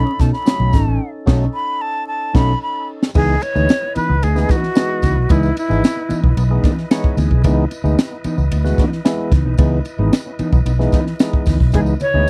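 A jazz flute leads this playful funk groove, its airy, expressive metal tone carrying vibrato and a soft attack as it solos over the opening 3.2 seconds, then drops out at 6.3 seconds and returns briefly near the close. Up front beside it, a crisp fusion drum kit with a high-tuned snare and punchy kick drives the straight feel and plays a fill as the band's opening accent ends. A dark, foam-muted fingered bass gives a round, amped bottom. A mellow electric guitar plays clean, fingered accompaniment in the background. Two percussive tonewheel organs with key click and slow rotary speaker fill out the harmony, one holding sustained chords and the other, set further back, playing stabs, with an organ fill arriving around 6.6 seconds. Very quiet congas struck with hard hands appear at the start and end, a distant, jingly tambourine sits behind the band, and the chords move from B9 to C#m9 in a dry, close 1970s-style sound flecked with vinyl crackle, cut from a longer piece.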